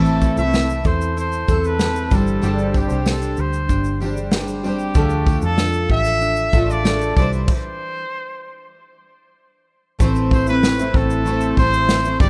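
A clear, distant trumpet with vibrato and delay sings the melody over a full-bodied, double-tracked jumbo steel-string acoustic guitar, a small fingerpicked nylon-string guitar playing arpeggios in the background, a dark, round, foam-muted electric bass, an airy, polished acoustic drum kit with a punchy kick and shaker, and a very quiet, jingly tambourine in this easy-going, sunny acoustic pop excerpt, which has a stop from 7.5 to 10.0 seconds and the sound of a rough home demo mix with light reverb.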